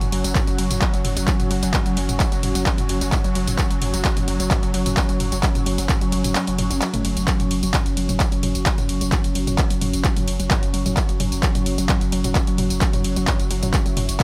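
A straight 4/4 pulse at 130 BPM drives this relentless, hypnotic peak-time techno, cut from a longer piece and centred on F#. A layered, punchy electronic kick enters at 0.4 seconds and briefly drops out between 6.4 and 7.3 seconds. Meanwhile, a tape-warm analog drum machine sits up front with handclaps, hi-hat, ride cymbal, tambourine and toms. Underneath, a thick, overdriven triangle sub bass sustains on a low F#, low-pass filtered and pumping against the sidechain. A moody sawtooth pad with a sub octave drifts through chorus and reverb above, while a tense, granular, wave-folded drone swarms in the background. A lo-fi, warbling square-and-saw pluck riff adds a dusty, mellow figure colored by tube saturation, chorus and dub echo.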